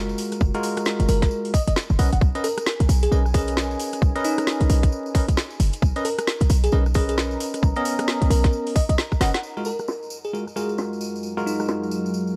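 This UK garage clip has a bouncy, soulful two-step shuffle, with swung sixteenths and lush major-ninth harmony. A clean, bright tine electric piano supplies bell-like stabs with dub echo, while a vintage FM electric piano carries the sparkling, warbling melody through chorus and a cassette-tape character. Underneath, a punchy, sine-based 808-style bass pumps against a tight, up-front electronic kick, and a garage kit adds a woody, filtered snare, metallic hats and rim clicks, with a jingly acoustic tambourine on top. A deep, moody sawtooth pad, detuned and washed in chorus and reverb, drifts into the background at 2.8 seconds. After a drum fill at 9.2 seconds, the kick and bass drop out, leaving the keys, pad and percussion to ride the dark, dry production and its vinyl crackle.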